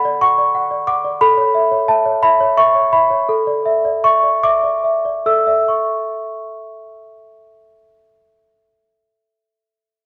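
A solo celesta, bell-like and delicate with a sweet, airy touch from its medium felt hammers, sits up front in this short classical lullaby cut from a longer piece, moving in a gentle 6/8 lilt through a high, glinting range. The tender, innocent mood gradually slows from 0.2 to 5.7 seconds, where a new section begins and settles back onto the home chord. A moderate scoring-stage reverb surrounds the instrument, and the production leans dark and warm.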